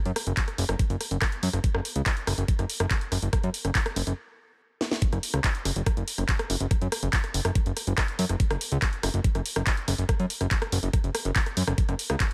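Psychedelic trance at 142 BPM in 4/4, intense and driving, built on a fat, saturated analog bass of detuned sawtooth and square-wave tone with a fast-attack filter pluck ranging from F#1 to F#2, a knocking electronic kick entering at 0.4 seconds, and a layered techno kit of cracking snare, handclaps, rim click and warm hats re-recorded in a large room, all up front and dry, with a stop from 4.2 seconds, a drum fill at 4.8 seconds and a drop at 5.0 seconds that runs to the end of this cut from a longer piece.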